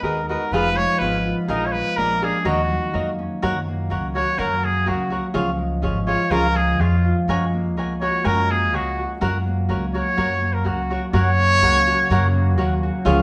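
Romantic and proud, this mariachi fragment sets a clear, lightly vibrato trumpet melody up front against crisp picked cavaquinho, ringing harp arpeggios and a woody, thumpy pizzicato upright bass, all in a roomy live-band studio space, before a swirling, detuned analog pad with phaser and chorus slips into the background at 11.1 seconds.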